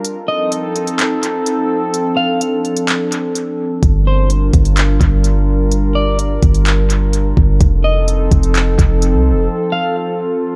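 A half-time 4/4 groove at 127 BPM comes from a smooth, electronic R&B drum kit of soft kick, smooth hi-hat and handclaps touched with analog delay, running to 9.1 s beneath a warbly, nostalgic tape-like pad whose detuned, chorused chords pump against the beat over F7, Gm7 and back to F7. This ethereal, hazy cloud-rap hip hop excerpt sets a dark, slightly broken-up electric guitar melody with its own analog delay high above, while a deep, boomy 808-style sine bass arrives at 3.8 s and drops out at 9.5 s. The echo-heavy mix keeps every part up front and close, with little room sound.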